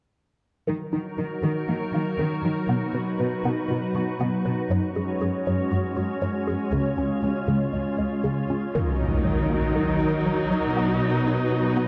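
A glassy FM pad with ensemble chorus and its own reverb holds sustained chords up front in this brooding, relentless cinematic excerpt, over a woody, warbling pluck playing arpeggios through chorus and digital delay in the background and a dark, bowed cello section carrying the bass, until a lush viola section with vibrato and portamento joins alongside an electronic impact at 8.8 seconds.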